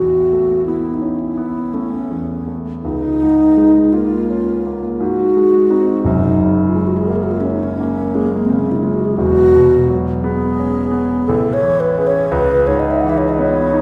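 In a slow 3/4 at 57 BPM, the pulse stretches and relaxes with a rubato feel, giving this impressionist classical duo a dreamy, pastoral calm. A mellow alto flute with a wooden head carries the melody from A#3 up to F#5, its straight, airy tone and soft attack sounding hollow, close-miked and up front. Beneath it, a polished, present grand piano supplies the accompaniment across a range from E1 to G#4, also sitting forward in the mix. The harmony drifts through colourful chords, moving from A69 to C#6 at 2.8 seconds, G#7 at 5.0 seconds and on through F#add9, E69 and Amaj7 before settling on C#m7. A recital-hall reverb with a 1.4-second decay surrounds the pair, lending the sound of a church or concert hall to this brief passage cut from a longer piece.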